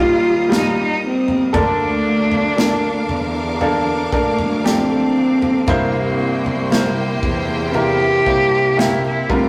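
Through a rough rehearsal-room recording with warm saturation and a wet stone-room reverb, this heartfelt, tender pop ballad moves at 58 BPM in 4/4 from Eb through Bbmaj7/D to C7. A single bowed cello sings the focused, vibrato-rich melody up front. A biting violin section traces a second line and a lush string section holds expressive sustained chords with portamento in the background, while a brilliant grand piano plays accompaniment and a full-bodied steel-string acoustic guitar picks arpeggios with audible finger squeak. A veiled, con sordino cello section carries the bass, and a natural country drum kit with a punchy kick, snare and toms comes in at 0.5 seconds.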